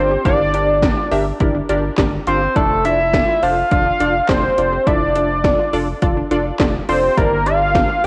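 Driving and nocturnal, this synth-pop fragment moves at 104 BPM in a straight 4/4, centered on D minor and cut from a longer piece. A fat, warbling analog lead carries the melody up front, its detuned sawtooth and square-wave tone thickened by a sub octave, chorus, vibrato and a filter sweep. Beneath it, a funky polysynth comp adds punchy, detuned chords with a filter pluck and chorus. A round analog pluck plays arpeggios in the background through chorus and tape echo, and a deep, nasal analog bass anchors the low end. From 0.3 seconds, overdriven 80s electronic pad drums bring a punchy kick, gated snare, metallic hi-hat and handclaps with a cassette-tape grit. The harmony moves from Gm to Dm/F and back to Gm, and the whole sits in a lush hall reverb with the hazy character of a home cassette recording.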